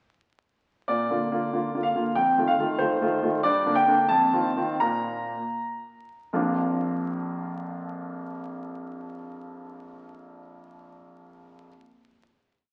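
Heard through the crackle of a very old 78 rpm record and the wet bloom of a recital hall, this classical-period sonatina is a playful, cheerful whole piece in 2/4 with a rubato feel. A clear, open baby grand piano plays solo and up front from 0.9 seconds, carrying a single-line melody over repeated chords with long sustain. The theme slows down from 2.8 seconds before settling onto a final chord at 6.3 seconds, which rings on in the hall.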